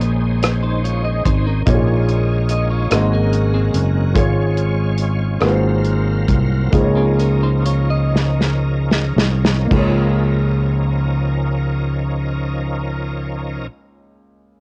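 A round, punchy fingered electric bass sits up front in this slow, reverent yet hopeful gospel passage in 6/8, cut from a longer piece. A polished, present grand piano with short sustain carries the accompaniment. A shouting tonewheel organ, lightly overdriven with key click, chorus vibrato and a slow rotary speaker, holds sustained chords above it. A clean, compressed electric guitar picks a second line, and an acoustic soul drum kit with dark cymbals and a tight kick adds rim clicks and hi-hat. The music begins slowing down at 4.2 seconds, a drum fill arrives at 8.1 seconds, and the drums drop out at 10.0 seconds. The home cassette recording carries light reverb, with tape colouring the piano, organ, drums and guitar.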